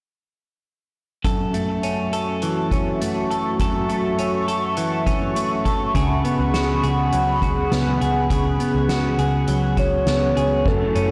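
Ethereal and hazy, this dream pop excerpt drifts along at 102 BPM in F# minor, its straight 4/4 pulse resting on an F#m7 chord that gives way to C#7sus4 at 6.0 seconds. From 1.2 seconds a swirling, detuned analog pad holds sustained chords behind a phaser and chorus, while a clean, twangy electric guitar sits up front with fingered arpeggios touched by subtle chorus and digital delay. Underneath, a soft-mallet drum kit with dark cymbals and a boomy kick keeps time on crash, hi-hat, kick and snare. A foam-muted, round picked bass joins at 5.9 seconds, its punchy low notes colored by transformer saturation. Near the close, at 9.8 seconds, a full, octave-layered synth lead with vibrato slips in a brief melody through chorus and delay. The whole recording is blown-out and overdriven, set in light reverb with a small room ambience, and it is cut from a longer piece.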